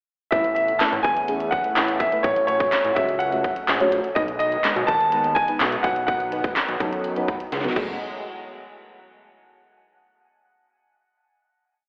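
A clear, polished baby grand piano carries a motif-based melody with dub echo through a bittersweet, energetic dance-pop pre-chorus, over soft, dark chord stabs treated with chorus and phaser, a lush, nasal unison pad in the background, a fat, detuned analog bass figure (stabs, pad and bass pumping under sidechain), and a punchy, overdriven house drum kit with claps layered on a cracking snare, whose fill at 7.5 s leads into a final hit at 8.0 s, the whole mix bathed in a moderate, lush hall reverb with a thin, telephone-like colour.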